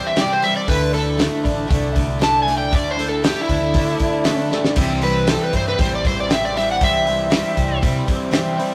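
An overdriven slide guitar solo sings up front over shimmering, octave-doubled twelve-string acoustic picking, a very quiet clean tonewheel organ through a rotary speaker, and a crunchy double-tracked electric riff in the background, with a damped 70s drum kit (dry, with a fat snare and dark cymbals) joining at 0.2 seconds and a round, hollow-body picked bass at 0.7 seconds, in this nostalgic, warm folk and heartland rock excerpt at 118 BPM in 4/4, moving between C and Dsus2 with a drum fill at 4.5 seconds, all caught in a rough rehearsal-room recording with saturation and a moderate stone-room reverb.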